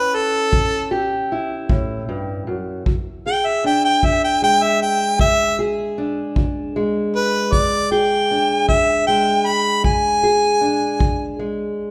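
Set in the moderate reverb of a recital hall, this soulful, laid-back acoustic country blues excerpt moves at 52 BPM in 12/8 in E mixolydian, with a clear, up-front harmonica singing the melody with vibrato, scooped notes and a smooth, jazz-style top over a dark, boxy fingerpicked parlour steel-string guitar shifting from A7 to E7 at 2.9 seconds, while a punchy, smooth kick drum played with brushes enters at 0.5 seconds.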